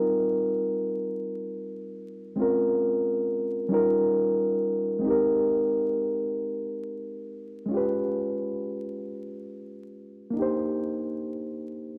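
Set in a slow 6/8 at 45 beats per minute with a straight feel, this intimate, sensual R&B excerpt in Eb major features a mellow reed electric piano playing alone from 0.0 to 12.0 seconds, its reedy, clean voice sitting up front through built-in speakers and bathed in spring reverb. Lush extended chords drift from Eb69 through Bbm9, Eb9 and Abmaj9 to Db7#11 and Cm9, while a wet studio reverb and vinyl crackle lend the short passage an intimate glow.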